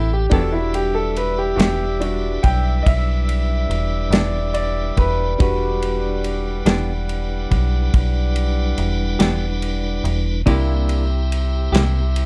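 A clear, natural grand piano takes the lead through this brief, smoky slow blues in 12/8, moving over a brooding Em7 that turns to C7 at 10.5 seconds. Beneath it, a metallic, digital FM bass with a fast, decaying attack and an acoustic drum kit with dark cymbals and a tight kick sit up front, while a bright, twangy clean electric guitar with tremolo adds accompaniment. A piping tonewheel organ with key click and slow rotary speaker and a soft-attack vintage saxophone section hold sustained chords, all in a dark, dry production cut from a longer piece.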